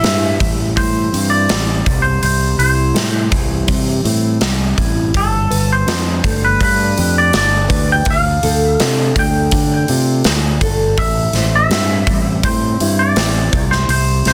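A twangy electric guitar carries the melody from the very start of this dark, cathartic quiet-loud alternative rock excerpt, its clean picked tone trailing a digital delay, while a full-bodied steel-string acoustic guitar picks arpeggios beneath it with fresh-string sparkle and the occasional finger squeak. Set at 82 BPM in a straight 4/4 and in A minor, the passage moves through Am7, Gadd9 and Dm before returning to Am7 at 11.0 seconds. A growling fingered bass sits prominently in the mix, bright and overdriven, giving the low end a gritty edge. The big rock drum kit sounds up front, with a punchy kick, a medium-tuned snare and hi-hat ringing in a big room. All four parts play throughout the 14.3 seconds, wrapped in light reverb and a dense, heavily limited modern master.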